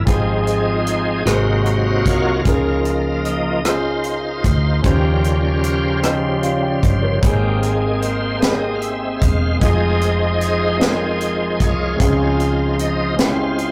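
A rough rehearsal-room recording with tube saturation and a moderate studio ambience opens this short cut from a longer slow gospel piece in a straight 6/8, uplifting and soulful in mood. The tonewheel organ takes the solo across the whole passage, its bright, shouting tone pushed up front and colored by a slow rotary speaker and chorus vibrato as it sustains full chords. Beneath it, a concert grand piano supplies accompaniment with a natural, deep-bottomed warmth. A hollow-body short-scale electric bass, fingered and amped, holds the low end with a dark, round, punchy sound. A tight funk drum kit enters at 0.1 seconds, close and natural in a small room, with a high-tuned snare, a tight kick, rim clicks and hi-hat. The harmony moves through rich extended chords such as Fm9/Ab, Db69, Eb13 and Abmaj9 before settling on Dbmaj7 at 12.0 seconds.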